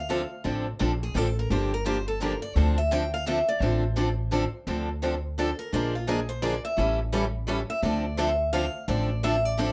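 Heard in a light reverb, this fiery, bittersweet cut of jazz manouche in 3/4 has a swung feel, with a bright picked archtop guitar carrying the melody up front over a woody, thumpy gut-string upright bass. A boxy parlour steel-string guitar with fresh strings, finger squeak audible, solos through the full 9.7 seconds. A second archtop guitar, warm and in the background, fills out the accompaniment as the harmony moves from Dm7 through Gm7, Bb7 and A7 to a closing Dm9.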